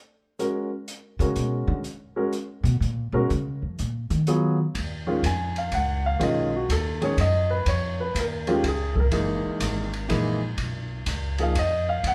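Swinging in three, this moody, late-night jazz piano trio opens with a present, up-front grand piano carrying the melody and an airy, polished drum kit of hi-hat, boomy kick and dark ride cymbal, while the woody, thumpy pizzicato upright bass on gut strings enters at 1.2 s for a solo that runs until 4.8 s, all captured with light reverb as a band playing live together in one room in this cut from a longer piece.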